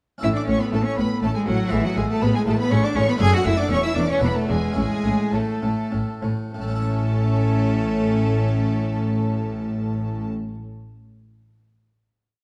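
At 0.2 s, a brilliant, festive baroque-style concerto movement in A major opens its 3/4 ritornello, with a lush symphonic violin section carrying the melody high above. A soft, sul tasto chamber violin section and a focused solo cello double the tune at the octave, while a plucked French harpsichord rolls chords and a smooth studio viola section adds repeated notes and sustained chords. A rich chamber cello section and an expressive double bass section with portamento anchor the bass, and the tempo, moving between 95 and 122 BPM, slows from 2.5 s into a final chord at 6.5 s, set in a dark, warm production with moderate recital-hall reverb.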